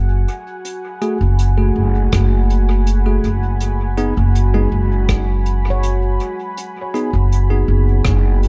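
A deep, detuned ambient pad with chorus and reverb opens this meditative, spacious ambient dub excerpt at 81 BPM over a woody, up-front pizzicato upright bass on gut strings, joined moments later by a brushed jazz kit whose hi-hat and rim clicks carry dub echo. Bell-like electric piano stabs with dub echo arrive at 1.0 seconds, a muffled, pitched-down electronic kick thumps in the background from 2.1 seconds, and at 4.5 seconds a ringing handpan adds sharp-stroked arpeggios through tape echo. The harmony moves from F#madd9 to G#m/F# in a dark, warm small-room sound.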